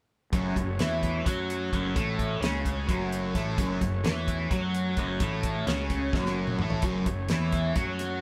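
Hypnotic and mysterious, this short psychedelic rock excerpt in F# minor moves in 7/8 at 258 BPM, with a bright, double-tracked fuzz guitar riff up front over buzzy combo organ chords with heavy vibrato, a fingered electric bass overdriven into fuzz, and a dry, damped 70s drum kit with a fat snare and tight kick that plays a fill from 6.1 to 6.8 seconds, all captured as a band playing live in one room with light reverb.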